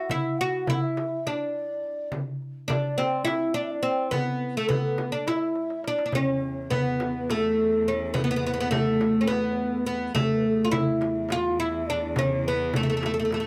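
Hypnotic and full of longing, this short passage, cut from a longer piece, is a Turkish makam ensemble piece moving in a straight 7/8. An up-front, fretless oud carries the melody, its plectrum-plucked double strings sounding bright and woody. Behind it, a low, end-blown reed-cane ney traces a second line with a breathy, hollow straight tone and soft attack, set distant in the background. A crisp, metal-shelled darbuka sits close and dry, joined by a small frame drum that is compressed and slightly saturated further back, and a drum fill from 5.6 seconds leads into a new section. At 6.1 seconds a single bowed cello enters on a low E drone, focused and close with vibrato, while light reverb gives the ensemble a gentle sense of space.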